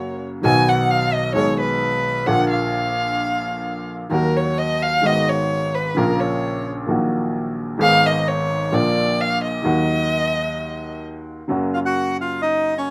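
Tango with an elegant, nostalgic mood and a loose rubato feel, cut from a longer piece and set in a moderate club reverb. A single bowed violin, close and up front, takes a featured solo with vibrato, portamento and a soft attack until 11.0 seconds, while a woody, natural-sounding upright piano accompanies throughout. At 11.7 seconds a reedy, dark bandoneon, dry and full, enters up front with the melody as the music moves into a new section.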